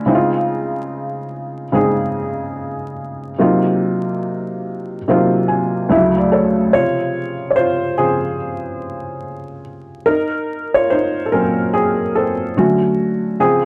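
A lazy swung sixteenth-note feel in 4/4 carries this dreamy, nostalgic hip hop fragment, cut from a longer piece, where a lone felt-muted upright piano sits up front with a soft, mellow, intimate tone, short sustain and audible action noise, playing alone from 0.0 to 13.7 seconds through a cassette-tape, low-pass haze over lush chords like Dbmaj7, Ab13/C, Bbm11 and Dmaj7, all steeped in a damp studio reverb, worn warbling tape, drifting pitch and vinyl crackle.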